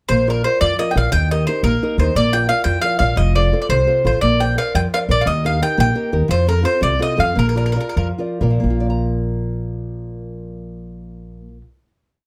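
This is an Italian folk serenade in 6/8 and Bb major, a short, complete piece with a romantic, lively mood that moves at 83-118 BPM counted in dotted quarters. The mandolin carries the melody in song-like phrases built from short motifs, its picked double strings giving a round tone placed up front. Beneath it, the nylon-string guitar plays a fingerpicked oompah of bass notes and chord figures, small and warm in sound, with an audible finger squeak. The upright bass plucks roots and fifths on the main beats, its gut strings sounding woody, dark and thumpy. The tune slows down from 6.3 seconds, and at 8.6 seconds it settles onto a final chord that rings on, with the mandolin already stopped. Close, detailed microphones and a light reverb keep every instrument near and clear.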